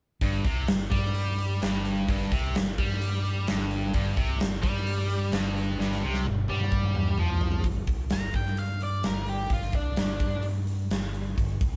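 A straight 4/4 groove at 129 BPM drives this raunchy, driving blues rock power trio and southern rock excerpt on a Gsus4, where a huge acoustic arena drum kit with a punchy kick and medium-tuned snare sits up front beside a bright, double-tracked, overdriven picked guitar riff and a warm, amped, overdriven fingered bass, until a drum fill at 5.8 s leads the riff out at 7.6 s and a dark octave-fuzz lead guitar solo enters at 8.1 s, all captured as a band playing live in one room with light reverb.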